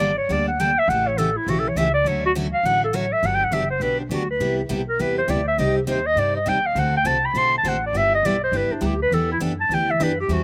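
A dry, close outdoor sound frames this charming, lively gypsy-jazz swing at 204 BPM, cut from a longer piece, where a warm, vibrato-laden clarinet with a breathy subtone takes the solo up front alongside a bright, full-bodied picked steel-string acoustic guitar that shares the slapback echo, while a woody, thumpy pizzicato upright bass on gut strings anchors the harmony as the key moves from D major to G major at 3.2 s through chords like Gmaj7, Cm and D7.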